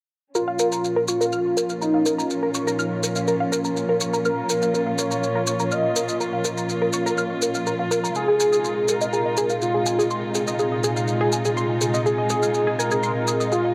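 A thick, detuned unison saw lead carries the melody through lush chorus and delay in this dark, driving melodic techno excerpt, its filter sweeping alongside a tight, vintage sequenced synth arpeggio dressed in phaser and tape echo and a rich bowed chamber string section holding filtered chords, while a warbling, lo-fi tape-like pad drifts in at 1.2 seconds, grainy maracas tick close by, and a huge ambient reverb washes over the mix.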